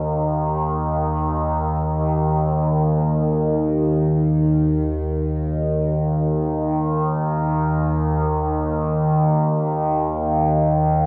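A single overtone-sweeping drone carries this dark, unsettling ambient fragment, cut from a longer piece, sounding alone from 0.0 to 11.1 seconds in free time. Built from sawtooth and sine tones, it sits up front with a resonant, slow-attack body, moving overtones and a long release, spanning Eb2 to Eb3 against a tuning of A4 = 438 Hz. Chorus, phaser, built-in reverb and a diffuse ambient delay blur its edges, while a wet cathedral reverb with a 6.0-second decay surrounds it in a vast, cavernous space. The sound is worn, carrying the warbling pitch drift of old cassette tape, which adds to the uneasy atmosphere. A brief opening passage gives way to a second section at 3.0 seconds that continues to the end.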